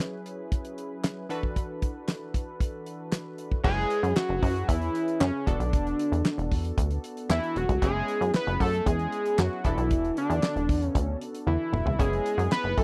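A dry, close studio sound frames this slick early-eighties boogie funk excerpt, opening with a damped drum kit of tight kick, fat snare, toms, hi-hat, dark crash cymbal and handclaps beneath a punchy, detuned polysynth comp that sits further back with chorus on its suspended ninth chords. At 3.6 seconds, a plucky, nasal analog bass with a decaying filter pluck and a fat, warbling lead with vibrato, a sub octave and filter sweeps enter up front, the lead carrying the melody. A drum fill at 11.5 seconds rounds off the passage.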